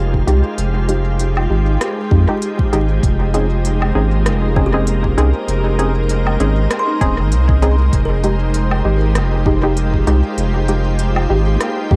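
Ambient dub with a deep, spacious mood and a gently swung feel, this excerpt rests on a round, sine-toned sub bass placed up front, a deep electronic kick, and a tape-softened electronic kit of smooth hi-hats, rim clicks and woodblock that trail off into dub echo. Above them, a calm, detuned organ-like pad holds bright chords bathed in ensemble chorus and reverb, while muted sawtooth chord stabs with a short filter pluck repeat through their own dub echo over a Fm9 to Bbm11/F progression. At 4.7 s a very quiet, woody kalimba enters with airy, ringing arpeggios, and vinyl crackle and light digital ambience surround the whole mix.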